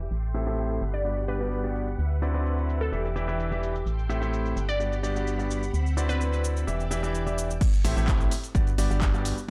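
A straight 4/4 groove at 128 BPM drives this euphoric, uplifting piano house cut in G major, with a punchy analog drum machine laying crash, handclaps, hi-hat and shaker under a hollow, organ-like FM bass that pumps to the sidechain with tube saturation. Up front, a clear concert grand piano riff with audible action noise and long sustain rides through delay, while a glassy wavetable pluck melody sparkles with chorus from 0.9 to 6.4 seconds, and shimmering vintage string-machine violins hold chords in the background under a filter sweep. At 7.6 seconds the strings stop and the drop lands with a tape-warm electronic kick and a very quiet, gritty sampler-style kit of hi-hat and snare, all in a dark, lightly reverberant mix over Am7, Gmaj7, D13 and Em7 changes.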